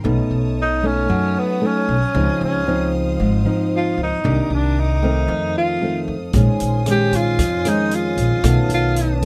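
Closely miked and nearly dry, this melancholic, smooth bossa nova excerpt at 114 BPM sets thumb-plucked nylon-string guitar with audible finger squeak, woody pizzicato upright bass and a faint, focused bowed string section under a breathy, whispered tenor saxophone solo full of subtone and scooped notes from 0.6 seconds, with ringing soft-mallet vibraphone and a swinging drum kit of hi-hat, rim click and punchy kick joining at 6.3 seconds over chords such as Dbmaj9, Cm9 and Bbm11.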